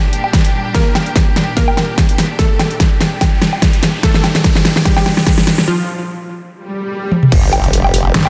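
Heavy wobble dubstep at 146 BPM in G minor, aggressive and menacing, this cut from a longer piece opens with a build-up where a lush, detuned sawtooth unison pluck carries the melody through tape echo over distant, bowed symphonic strings holding sustained chords with sidechain pumping and a low-pass filter, while an overdriven drum kit with a huge snare, bright hats, toms and woodblock plays fills alongside a punchy electronic kick. A background riser runs from 2.2 seconds into a break, followed by a swell and an impact at 7.3 seconds, where a chorused formant-sweep wobble bass arrives up front before a snarling, growling distorted saw bass takes over at 8.1 seconds. The sound is dense and heavily limited, with light digital reverb.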